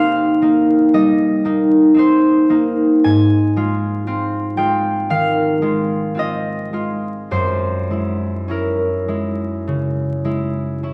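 Dreamy and peaceful, this short classical passage for solo concert harp drifts along at a slow 50-59 BPM in 4/4, with a loose, rubato feel in A-flat major. The harp is the only voice for the full 10.9 seconds, fingerpicked across a span from Gb2 up to Ab5, its bright, ringing strings sitting up front in the mix. The harmony moves gently from Cm7 to Ab6 at 3.0 seconds and then to Gb9 at 7.3 seconds, giving the moment a soft, floating color. A wet recital-hall reverb wraps the sound, and the listening position feels further back in the room, while a vinyl crackle adds an aged, intimate texture. Cut from a longer piece, it feels like a brief, suspended glimpse of a larger, tranquil work.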